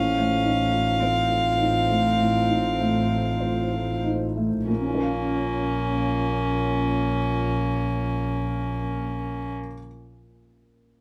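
This short passage, cut from a longer piece, sounds like a small ensemble playing together in one room, touched by light reverb. It is fragile, melancholic neoclassical music for piano and strings in Bb minor, moving at a rubato 46-54 BPM in 4/4 and slowing down through its opening bars before the harmony settles from F7/A onto Bbm at 4.7 seconds. A single bowed violin carries the melody up front, its sul tasto tone pure and floating with a soft attack, while one cello plays a rich second line beneath it with a slapback echo. A bowed double bass sits close and intimate, with light vibrato and an airy bow, and a felt-muted upright piano supplies mellow, boxy accompaniment with audible action noise. Behind them, a warbling, lo-fi tape-like pad holds dark, nostalgic chords with chorus and its own reverb; the strings and pad stop at 9.5 seconds, leaving the piano alone until 11.0 seconds.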